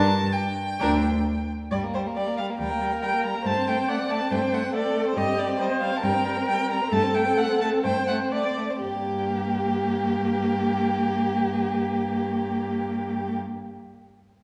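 A string quartet opens together in a stormy, dramatic classical-period movement in G minor at a quick 118-142 BPM with a rubato feel, the first violin carrying a focused, vibrato-rich melody up front while the second violin's expressive, portamento-tinged line and the viola's gliding accompaniment sit over the cello's smooth, even bass, all bowed by single players in a wet scoring-stage reverb before the music slows between 4.3 and 8.8 seconds and settles back on G minor at 8.8 seconds in this fragment of a longer piece.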